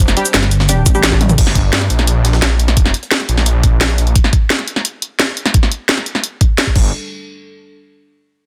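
Dense, heavily limited and dry, this short cut of dark, tense technical drum and bass opens on a drop. A thick, detuned saw bass with tube saturation and a pulsing, mellow pluck wobble bass sit up front beneath muted dub chord stabs treated with chorus and delay, over a very quiet, moody analog pad. A knocking electronic kick enters at 0.9 seconds ahead of a drum fill at 1.1, joining an up-front drum and bass kit whose cracking, softly clipped snare, bright hats, crash, shaker and toms ride over a gritty, pitched-up breakbeat sampler kit that stays very quiet and stops at 4.1 seconds.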